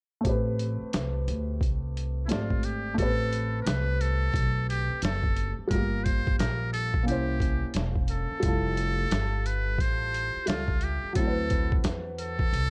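This is a jazz-hop piece in A minor at 88 BPM, a short cut from a longer track with a smoky, nocturnal mood and a swung sixteenth-note feel. A dark, worn upright piano plays accompaniment from 0.2 seconds, its mellow, slightly detuned tone carrying audible action noise, while a pizzicato upright bass sits up front with a growly, woody low end. The boom bap sampler-style drum kit is compressed, pitched down and gritty, pairing a thumpy kick and medium-tuned snare with hi-hat, and it has the tape-warm character of a kit re-recorded in a small room. At 2.3 seconds a trumpet with a metal mute enters as the solo melody, buzzy and thin yet brilliant, with a breathy soft attack and light vibrato in a jazz style. The harmony moves from Am9 through Gm7, C7b9 and Fmaj9 to D13, and studio reverb wraps the whole in a dark, warm production.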